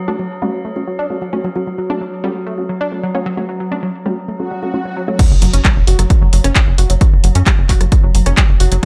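Driving peak-time techno at 132 BPM in F# phrygian, this intense, relentless passage is cut from a longer piece. It opens on an F# minor chord with a tight sequenced synth riff, detuned sawtooth and triangle tones that feel mellow yet driving, treated with chorus, phaser, dub echo and sidechain pumping while a filter sweep moves across it. Alongside it sits an eerie, metallic FM drone that fades in slowly and hangs on with a long release, and aggressive, thick rave stabs with ring modulation and tape echo punch in until the drop. A very quiet swell and impact starts at 4.4 seconds and leads into the drop at 5.2 seconds, where the harmony shifts to a bare F# power chord. There an up-front, layered kick, re-recorded in a small room, arrives together with a tape-warm analog drum machine of crash, handclaps, hi-hat and rim click, while a punchy sawtooth-and-square sequencer bass with a fast, decaying filter pluck drives the low end, all inside a digital ambience.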